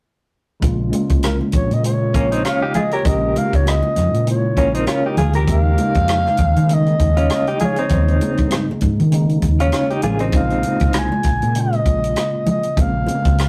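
Cinematic and smooth, this lush 1970s-style soul excerpt in Bb dorian moves at 99 BPM with a swung 16th feel over Bbm7 and Eb7sus4 chords, as a mellow tine electric piano, a dark, round hollow-body bass and a dry cocktail kit with a punchy kick open the groove, damped congas sit in the background, a breathy, whispered clarinet carries an intimate, vibrato-laden melody from 1.2 s, and a compressed, scooped clean guitar riff with tremolo runs from 2.1 s to 11.1 s, all within a rough rehearsal-room sound with tube saturation and moderate reverb.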